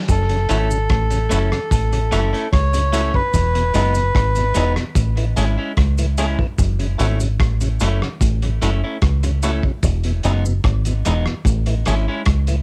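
A reedy, breathy melodica carries the melody up front at the start, its nasal tone soaked in tape echo, then it drops out at 4.7 seconds. This is a short, serious and meditative stretch of roots reggae, cut from a longer piece, at 74 BPM in a straight 4/4 and in F# dorian. Beneath the melodica, a dark, round, foam-muted fingered bass sits up front and carries the low end throughout, while a muffled vintage drum kit with a tight kick, hi-hat and rim click plays with a rolled-off top. A lightly overdriven tonewheel organ with vibrato and key click and a slightly broken-up, picked electric guitar with tube saturation and tape echo fill in the accompaniment, and a cabasa rattles faintly in the background. The chords cycle from F#m7 through Emaj7 to Amaj7 and repeat. It is a dry, lo-fi home cassette recording.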